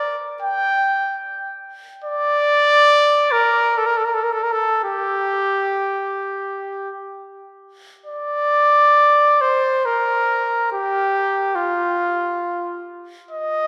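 Mournful and lonely, this classical excerpt features a single trumpet playing entirely by itself, free and expressive in a rubato three-beat feel. The trumpet sits up front with a clear, classical tone, moving between F4 and G5 across its short span. A long, wet church reverb surrounds each phrase, so the notes hang in a resonant space that deepens the sense of solitude. The opening passage gives way to a second section at 8.1 seconds, where the music shifts toward a brighter major colour while keeping its sorrowful character. The recording ends at 13.7 seconds, cut from a longer piece.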